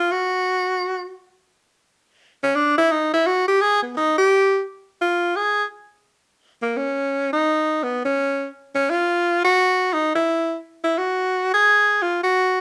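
Jazz with a cool, moody air, swinging at 171 BPM in 4/4, this fragment of a longer piece features a lone tenor saxophone playing solo and up front from 0.0 to 12.6 s, moving between Bb3 and Ab4. Its tone is clear and punchy with a smooth top, delivered forcefully with vibrato and scooped notes. A moderate club reverb places the horn in a club-like room across two matching passages, the second beginning at 5.7 s.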